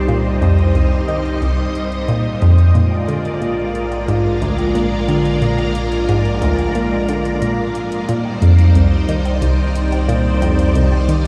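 A lush, vintage string machine opens with slow-attack sustained chords, up front and thick with ensemble chorus, over a deep, dark analog bass, moving from Cm through Bb7 to Cmadd9 in this cosmic, mysterious fragment of sequencer-driven space music at 90 BPM in C minor. A nasal sawtooth analog pluck carries the riff with a fast, decaying attack, a filter sweep and a noise layer, dressed in chorus, phaser and delay. Metallic, overdriven electronic hi-hat and woodblock fade in across the clip in the background with their own delay, all set in a long shimmer reverb that sounds like a big sound system filling a bare room.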